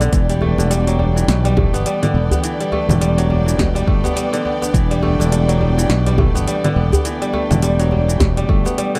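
Organic downtempo in E minor at 104 BPM with a 16th-note swing, this mystical, earthy excerpt rests on a single Em7 chord, led by an up-front, fingerpicked kora whose ringing, crisp arpeggios carry tape echo, over a growly, punchy fretless electric bass that pumps with sidechain. A soft-attack, bowed string section plays sustained chords with vibrato and a smooth top, also pumping, while an overdriven deep house kit of congas, metallic hats, shaker and punchy snare is joined by a deep, overdriven electronic kick from 0.1 s and a tight, cracking djembe in the background from 0.4 s. The production is dark and warm, set in a small room.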